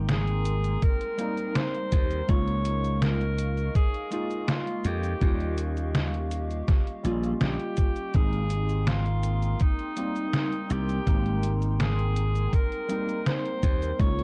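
Vaporwave at 82 BPM in Ab major, nostalgic and woozy, where a bright, vintage alto saxophone with light vibrato and tape echo carries the melody over warbly lo-fi synth keys with analog chorus and 12-bit sampler grit, a detuned pad sitting dark in the background, growly, punchy slap bass up front, and a detuned 8-bit drum machine of cabasa, hi-hat and snare joined by a thumpy electronic kick from 0.8 seconds, all moving through Abmaj9, Db69 and Eb9 in a dry, dusky cassette-toned production cut from a longer piece.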